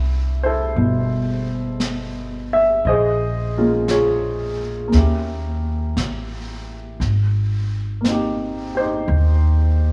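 A slow, swung 4/4 at 58 BPM sets a late-night, intimate jazz ballad mood in this short excerpt. Up front, a warm baby grand piano comps through C69, Bbm9, Eb7b9 and Abmaj7 alongside a woody, pizzicato upright bass. From 0.8 s, a brushed drum kit with a natural snare and hi-hat sits softer behind them, all wrapped in a light small-room reverb.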